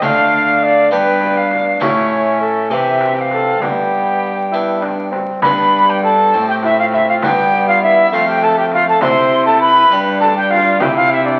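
Courtly and festive, this renaissance-style consort dance in 6/8 sets a present, warm cornet melody against an airy, up-front soprano recorder second line with vibrato and a tongued chiff. Beneath them, a bright, plucked harpsichord and a roomy, distant bassoon accompany, a bowed gut-string cello holds the bass, and a small frame drum sits in the background until 11.1 seconds. A wet stone-room reverb and the crackle of a very old 78 rpm record color this brief excerpt, in which the same opening phrase returns at 5.4 seconds.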